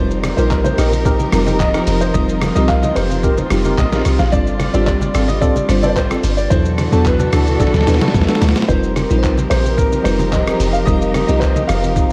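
A deep, round log drum bass anchors this soulful amapiano excerpt at 110 BPM, joined by a compressed, pitched-down sampler-style drum kit with a thumpy kick, handclaps, rim clicks and shaker, plus very quiet low-tuned congas with a thick-skinned, vintage tone. A natural-sounding baby grand piano carries the melody with subtle chorus and tape echo over bell-like, sparkling FM electric piano chords and a lush bowed string section with vibrato, moving through sus4 ninth chords. A hollow, dark organ stab sits in the background from 0.4 to 8.4 s, a drum fill arrives at 7.6 s, and the whole dreamy mix is soaked in hall reverb.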